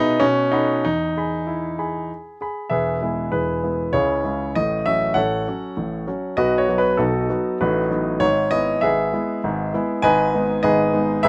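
In a straight 3/4 at 98 BPM, this graceful, cheerful classical-period piano sonatina in E major unfolds as a brief cut from a longer piece. A dark grand piano plays solo throughout, its mellow tone sitting up front and spanning E1 to B5. Its harmony moves from B7 to E, through C#m and F#m/A, toward B and G#m. Close, detailed microphones and little reverb give the sound an intimate, clear presence.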